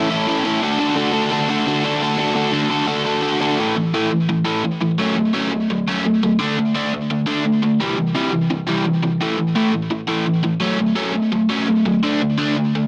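A straight 4/4 pulse at 171 BPM drives this upbeat, energetic punk fragment in A major, carried entirely by a lone overdriven electric guitar that is picked, double-tracked and placed up front, with a bright, scooped tone and digital delay. It opens on A and D chords, then at 3.6 seconds moves into a cycling run of A5, F#m, D5 and C, spanning from A2 to A4. A moderate studio reverb surrounds the guitar, and the mix carries a dense, heavily limited modern master.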